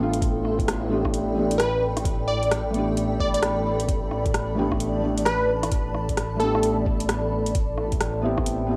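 Swung sixteenths at 131 BPM drive this rainy, melancholic future garage excerpt, with a muffled, pitched-down kick and metallic hats and rim clicks from a garage kit carrying the beat under moderate spring reverb, while a felt-muted upright piano with audible action noise and 12-bit sampler grit, a blurred granular cloud pad and a menacing detuned saw bass all pump against the sidechain over Gadd9/A, moving to Am7 at 7.5 s. From 1.6 s to 6.8 s a punchy, catchy plucky unison lead with vibrato and analog delay carries the melody between A4 and D5. The excerpt has the character of a home cassette recording.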